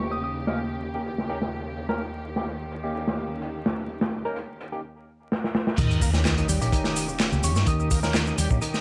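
Vinyl crackle and a light reverb frame this raw, swaggering breakbeat fragment, cut from a longer piece. A crunchy acoustic breakbeat kit sits up front, saturated and gritty with a tight kick, dark cymbals and a rolled-off top, over muted, con sordino studio strings that hold veiled, low-passed chords pumping under sidechain. A barky tine electric piano stabs through a combo amp with phaser and dub echo, while a crystalline FM bell flickers a brief melody through telephone-band filtering and 12-bit sampler grit. After a drum fill, the drop lands at 5.8 seconds with an electronic impact and sub drop. A shouting tonewheel organ riff with key click, light overdrive and slow rotary speaker arrives there too, along with a round, hollow-body picked bass and an overdriven garage kit of metallic hats, handclaps and shaker. The bell returns at 7.4 seconds over the fuller groove.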